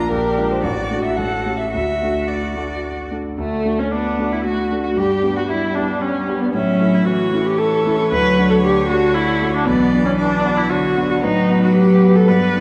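A spirited, cheerful classical-period movement for piano quartet in D major at 114 BPM in a rubato 3/4, where a rich, distant violin with vibrato carries the melody over a clear, smooth cello second line, an up-front, focused viola accompaniment and a vintage-toned concert grand with deep bass, set in the dark, wet reverb of a scoring stage.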